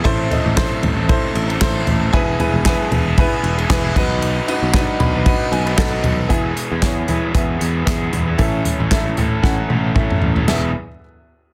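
Clear, woody upright piano, a lo-fi overdriven garage guitar riff and a growly picked electric bass open this uplifting piano-driven pop at 115 BPM in E major with a light 16th-note swing, joined by an up-front acoustic kit played with bundle sticks (punchy kick, softly clipped snare, hi-hat, ride, crash, toms and handclaps), with a piano fill at 4.7 seconds and a drum fill at 9.4 seconds before the chords settle back on E.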